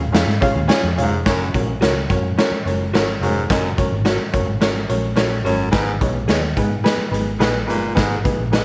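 A straight, uptempo 4/4 groove drives this joyful, uplifting 1960s-style soul excerpt. A raw garage drum kit sits up front with a boomy kick, a gritty, saturated snare and hi-hat in a bright stone room, while a dark, round, foam-muted picked electric bass and a worn, woody, slightly detuned upright piano carry the harmony from C# into F# and later G#m. Quiet, lo-fi guitar stabs through a small old amp join at 0.7 seconds, and a raspy, growling, close-miked baritone saxophone riff with vibrato enters at 1.0 seconds, all in a small room with light reverb.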